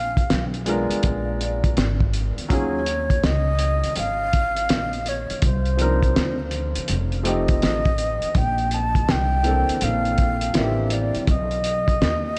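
Soaked in a dreamy cathedral reverb, this cool, mellow jazz-hop excerpt has a 4/4 groove with swung sixteenths. A breathy concert flute with vibrato and a crisp attack carries the melody up front over a dark, woody pizzicato upright bass, while a muffled, cloth-damped drum kit with a fat snare, tight kick and gritty 12-bit sampler crunch comes in at 0.2 seconds. A warm upright piano, intimate and natural with audible action noise, accompanies from 0.7 to 11.3 seconds through chords such as Bb7b9, Cm11 and Bbmaj9#11.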